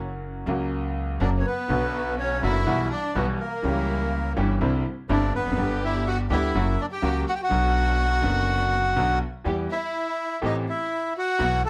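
A reedy bandoneon carries the melody of this dramatic, sultry tango excerpt from 1.2 seconds, over a brilliant, up-front concert grand piano and a woody, thumpy pizzicato upright bass on gut strings, both playing from the very start. A clear, intense violin section adds a bowed second line with vibrato in the background, while a veiled, con sordino string section enters at 1.7 seconds with soft-attack stabs. Light reverb surrounds the rubato feel as the harmony moves from F# through Bm, C#dim and G before turning to Em and Am7 in the final seconds.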